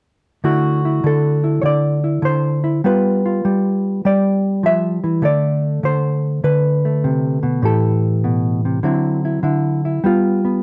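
A clean, fingered hollow-body electric jazz guitar sits up front in this dark, dry solo jazz excerpt, swinging at 100 BPM in 4/4 with a sophisticated, relaxed mood as it moves through D9, G7, Am7 and back between 0.4 and 10.6 seconds.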